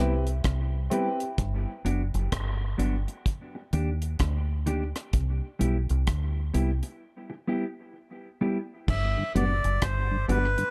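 Dub reggae at a laid-back, hazy 64 BPM in G major with a swung feel, this short excerpt opens on a woody, slightly detuned upright piano stab with dub echo, beside a round, foam-muted fingered bass and a clean, compressed electric guitar, both dark and up front, while a dry reggae kit with a tight kick, rim clicks, hi-hat and crash enters at 0.3 seconds. Through a break over Gmaj7, Ebmaj7 and Cmaj7 chords, bass, guitar and drums carry on in a small room with light reverb. At 8.9 seconds a reedy, breathy melodica takes the melody with dub echo, joined briefly by very quiet, twangy envelope-filtered guitar arpeggios and, from 9.2 seconds, a mellow tonewheel organ with chorus vibrato and key click sitting in the background.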